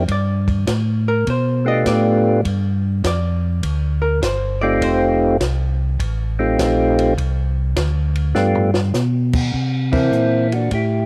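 Soul jazz organ trio excerpt at 102 BPM in swung 4/4 and C mixolydian, greasy and swinging, with a round, percussive tonewheel organ carrying the melody up front through a slow rotary speaker over a mellow organ bass with key click and a stopped rotary, a clean, fingered hollow-body jazz guitar soloing until 5.1 seconds and returning briefly near the end, and a dry compact cocktail drum kit with dark cymbals, a high-tuned snare and a punchy kick playing a fill at 8.4 seconds before a band accent at 9.8 seconds, set in studio reverb.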